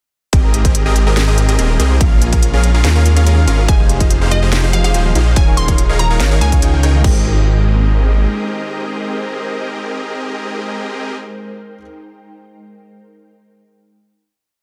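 Lush and bright, this half-time future bass piece at 143 BPM in Ab major opens straight into a drop, where an overdriven, punchy electronic kick and a trap kit of sharp snare, crisp hats and crash drive beneath a thick, chorused detuned saw bass with long gliding notes, pulsing sidechained supersaw stab chords with tape echo, and a very quiet soft round pluck cycling a 6-step arpeggio that drifts against the bar; an ethereal, phased pad enters at 2.8 seconds, a glassy wavetable pluck melody with dub echo and a dark, worn grand piano with audible action noise join at 3.7 seconds, and from 7.0 seconds the piece settles on a final Abmaj9 chord as the drums fall away, with a dense, heavily limited master and little reverb.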